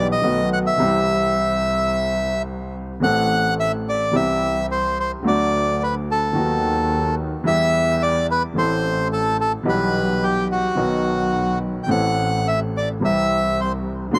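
Tense and passionate, this tango excerpt moves with a rubato feel in 4/4, its bandoneon carrying the melody up front with a reedy tone and a slapback echo. A smooth, vintage-toned grand piano supplies the accompaniment while a single bowed double bass, focused and distant with vibrato, holds the low end throughout the 14.2 seconds. The sound is dry and open-air, with little reverb, and the harmony circles through minor chords such as Am and Em before settling on C.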